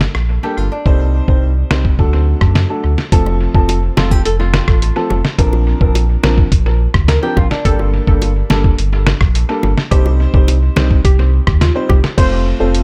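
This dancehall excerpt opens with a muffled, pitched-down sampler drum kit, its thumpy kick and fat snare up front, over a deep, full sub bass doubled an octave up. At 0.4 seconds, an intimate grand piano with audible action noise and long sustain joins fingerpicked flamenco guitar arpeggios complete with finger squeak, and both share the drums' tape echo. Very quiet, low-tuned bongos add round, close and dry percussion from 3.3 seconds. Later, a hollow, detuned square-wave pluck with chorus sits in the background as a bouncy second line. The mood is hypnotic and sultry, with little reverb but plenty of echo, over chords such as Gmadd9, Cm and Bbadd9. At 12.2 seconds, a mellow, shimmering steel pan briefly takes the melody before the cut.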